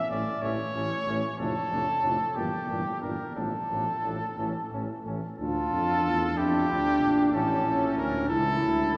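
Noble and stately, this brief passage cut from a longer classical brass quintet unfolds in a flowing 6/8 with a rubato feel, its harmony moving through minor-key chords and resting on a dominant chord at 7.3 seconds. A clear trumpet carries the melody up front with a light vibrato, while a second trumpet, mellow and soft in attack, sits in the background with its own gentle vibrato. Beneath them, a French horn with a vintage, mellow tone and a mellow euphonium fill in the accompaniment from the background. A dark bass trombone anchors the low end, its soft attack and light vibrato giving the foundation a velvety weight. The ensemble is bathed in a wet cathedral reverb with a long decay, layered over a small room ambience, lending the short phrase a spacious, ceremonial glow.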